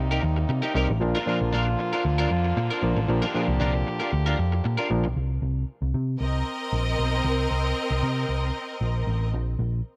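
A dark, round hollow-body bass sits up front through this glamorous, driving disco excerpt, picked over a change from Cm7 to Bb. In the opening section, a muted French horn section holds nasal, metallic chords, while a slightly broken-up, twangy electric guitar with ensemble chorus and a percussive, mellow clav fill out the accompaniment, all three stopping at about 5.1 seconds. From 6.2 seconds, a bright, biting string section carries a lush bowed second line with vibrato over Cm7, and studio reverb adds space.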